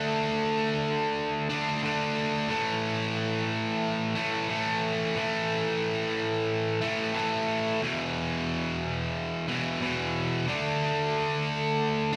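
A bright, overdriven electric guitar, picked and double-tracked up front with slapback echo, plays alone through the venue's PA in this swaggering, raunchy 12.2-second cut of straight 4/4 rock at 90 BPM, ranging from E2 to D4 over D5, A5 and E5 power chords amid club ambience.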